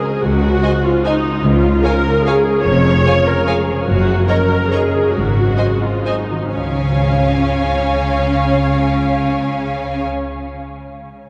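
Bathed in a dark cathedral reverb that hangs for seconds, this short cut from a longer orchestral ballroom waltz in D-flat major sounds elegant and festive, moving in 3/4 with a rubato feel between 122 and 160 BPM. The viola section sits up front with a warm, expressive tone, vibrato and portamento, though it has a slightly distant studio character as it carries the accompaniment. A thumb-plucked concert harp rings out arpeggios in the background from the very start, while lush, bowed cello and double bass sections anchor the bass from 0.2 seconds, the double basses smooth and even in weight. At 0.6 seconds a rich, focused violin section takes the melody from the background, and a second violin section adds a warm second line with a smooth top. The phrase broadens from 3.3 seconds as the harmony passes through E-flat minor seventh and A-flat seventh, settling back on D-flat as a new section begins at 6.5 seconds.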